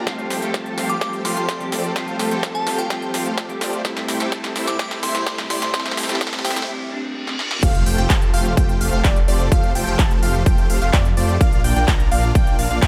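A straight 4/4 pulse at 127 BPM drives this uplifting, triumphant festival progressive house excerpt in F major, anchored by an overdriven, punchy electronic kick that sits up front and a big-room dance kit of crisp hats, snare, handclaps and crash cymbal re-recorded in a large room. The opening build-up runs to 7.6 seconds, with drum fills and a filter sweep, over huge, lush supersaw chords with sidechain pumping and digital delay. Beneath them sit a thick, beating detuned saw bass and a dark symphonic string section holding sustained chords in the background. A crystalline FM bell carries the melody with chorus, phaser and delay, while an electric guitar at the edge of break-up, picked and slightly broken-up, adds accompaniment until 7.4 seconds. A very quiet riser, reverse cymbal and impact mark the short break and the drop at 7.6 seconds, where a catchy plucky unison lead enters with vibrato-tinged arpeggios through a moving notch. 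The chords move from Fadd9 to C6 in the build and from Fadd9 to Bb in the drop, all within a light digital ambience.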